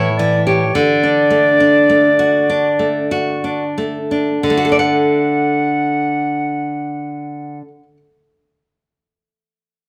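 Light reverb surrounds this live, one-room take of a tender, serene romantic duo in 6/8, cut from a longer piece and played with rubato that slows through the opening 4.4 seconds. A concert flute carries the melody with a pure, straight, tongued tone, while an up-front nylon-string guitar fingerpicks a bright classical accompaniment with the sparkle of fresh strings. The flute falls silent at 7.6 seconds, and the guitar rings on alone until 8.0 seconds.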